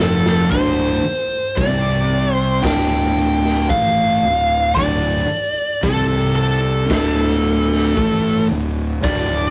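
A slow, straight four-beat pulse drives this brooding, heavy stoner and doom metal passage, which opens with a short drum fill before settling in at 0.5 seconds. The raw garage drum kit of hi-hat, punchy kick and medium-tuned snare sounds gritty and saturated, with a bright stone-room character, a pumping ambience and a rolled-off top. Alongside it, a double-tracked fuzz guitar grinds out a low picked riff, while a fingered electric bass, overdriven and growly, anchors the bottom in its deep register. Up front, a dark, distorted lead guitar carries the melody through a wah, sitting higher above the riff. The harmony moves from a rootless D minor to a bare D power chord, and the whole take has the rough, warm saturation of a rehearsal room with a light touch of reverb, cut from a longer piece.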